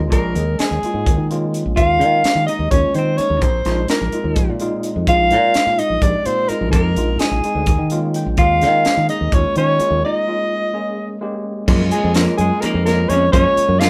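A worn, slightly out-of-tune tine electric piano with a touch of overdrive and a growly, punchy fingered bass open this soaring, funky electric jazz fusion excerpt in 7/8 at 254 BPM in Eb mixolydian, joined at once by an up-front mellow soprano saxophone lead with light vibrato and subtone, a dark, clean hollow-body jazz guitar second line in the background, and a crisp drum kit with a high-tuned snare in a pumping small room, the electric piano taking short fills and then a break from 10.0 seconds before a very quiet, slightly broken-up electric guitar adds compressed stabs at 11.7 seconds as the harmony shifts to F#maj9.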